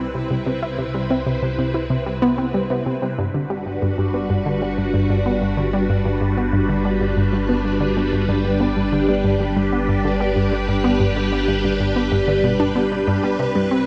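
Luminous and cosmic, this ambient, sequencer-driven space music moves at 94 BPM in a straight 4/4, set in G major and cut from a longer piece. A phased string machine fades in across the whole 13.9 seconds, holding sustained chords with a swirling, vintage, warbling sawtooth tone that sits up front, colored by ensemble chorus and phaser. Alongside it an analog pluck plays a riff with a round, detuned sawtooth and pulse character, a fast attack and short decay, with chorus and analog delay adding shimmer. A fat analog bass anchors the low end with a thick, wave-folded tone and a filter sweep, sitting lower in the mix than the other parts. The harmony moves from Cmaj7 to Gmaj7 at 3.2 seconds, and a lush hall reverb soaks the mix in a dreamy haze.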